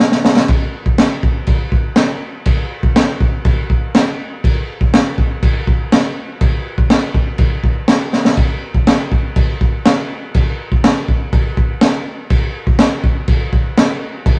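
Rowdy and swaggering, this straight 4/4 rock excerpt at 122 BPM features only a crunchy breakbeat drum kit, up front and gritty with a punchy kick, high-tuned snare, dark crash cymbal and rolled-off top, opening with a drum fill at 0.0 seconds and fitting in another at 8.1 seconds, all caught with light reverb in a rough rehearsal-room recording.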